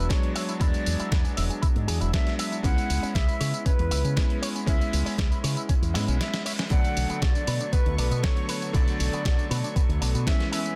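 A straight 4/4 nu-disco groove is driven by a knocking, tape-warm electronic kick sitting up front, layered with a gritty, sampler-style soul kit of hi-hat, fat snare and tambourine. Beneath it, a fingered electric bass runs through an envelope filter with a warm, direct and amped tone, while a clear electric grand piano with a clangy low end and chorused unisons carries the accompaniment, pumping against the kick and trailing delay. A dark, clean electric guitar, also filtered and treated with analog chorus and delay, plays a riff in the background, and a distant, airy silver concert flute with vibrato and tongued notes floats the melody through its own echoes. The harmony moves from E9 to C#m7, and around 5.9 s a very quiet electronic reverse cymbal sounds under a drum fill that opens into a brief break. At 6.7 s the chord settles on Bm9 as a distant, reedy studio string section enters with light vibrato and a gut-string, period-style tone, holding sustained chords that breathe with the pumping. 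The sleek, cosmic mood sits in a digital ambience with a dense, heavily limited modern master and a faint mains hum, and the clip is cut from a longer piece.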